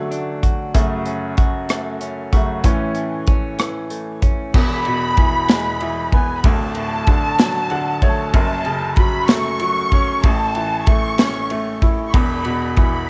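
In a slow 6/8 sway at 63 BPM, this dramatic, aching pop ballad excerpt sets a brilliant, up-front grand piano and a punchy, polished acoustic drum kit over a D, F#m, A and E progression, while clean, picked electric guitar arpeggios sound until 4.6 s, when a lush, expressive bowed violin section takes up a high second line, and the piano adds a fill at 7.4 s, all with moderate spring reverb and the character of a home cassette recording.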